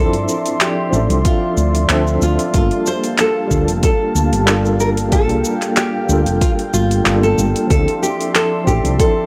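This sunset chillout excerpt opens with a fingerpicked nylon-string guitar carrying the melody, its deep classical tone touched by finger squeak and trailed by tape echo and shimmer reverb, over a mellow tine electric piano that sounds worn and slightly out of tune, pulsing with medium tremolo through a combo amp. An airy, breathy pad holds sustained chords alongside them, its detuned, chorused layers and moving notch giving a soft haze, while a growly, round fretless bass sits up front with transformer saturation. The deep house kit arrives at 0.1 seconds with cabasa, handclaps and metallic hi-hats, and an up-front electronic kick joins at 1.3 seconds, both tape-tinged and set in a small room. The relaxed groove moves at 93 BPM in 4/4 with a light swing on the sixteenths, in G dorian, shifting from Dm9 to Gm9 and back to Dm9. The overall sound is dry and gritty with light digital ambience, giving the mellow mood a grainy, hardware edge.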